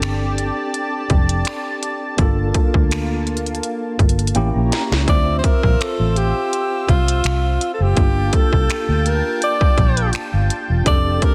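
A late-night, sensual stretch of contemporary R&B at 83 BPM in G dorian opens with a clean tine electric piano, a thick, detuned chorus-treated pad, a round, foam-muted fingered bass and a trap kit of finger snaps, crisp hats, a hard-clipped kick and a sharp snare, all carrying 12-bit sampler grit. After an electric piano fill and a drum fill, a breathy, close-miked alto saxophone enters at 5.1 seconds with a jazz-style solo in subtone and light vibrato, sitting up front with the bass and drums. Light reverb and digital ambience surround a dense, heavily limited modern master, while the chords move from F69 through Gm9 and A7b9 to a rootless Dm9 before returning to Gm9.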